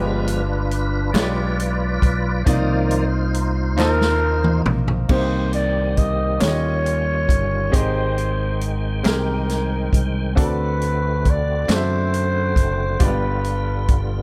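Slow, solemn and fervent gospel in 6/8 at 46 BPM in C minor, in which a tonewheel organ with slow rotary speaker and chorus vibrato takes a full, clean solo over brilliant short-sustain baby grand piano, round punchy fingered electric bass and an up-front big-band drum kit with punchy kick, while crisp group handclaps sit in the background, a drum fill starts at 3.8 seconds as a dark, raspy, growling trumpet with tape echo enters to carry the melody, and the drier mix moves through G7b9, Cm11 and Abmaj7 before resolving toward G7.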